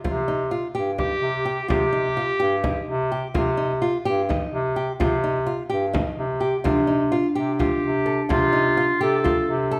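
Heard in a moderate recital-hall reverb, this hypnotic, pensive chamber piece in 7/8 rests on fingerpicked nylon-string guitar arpeggios with fresh strings, a clear, vintage bass clarinet bass line and a deep frame drum struck with hard hands, while a bright, distant clarinet carries the melody from 1.0 s and again from 7.6 s, and a mellow soft-mallet vibraphone adds a ringing second line from 6.7 s as the harmony moves from Cm to F/C.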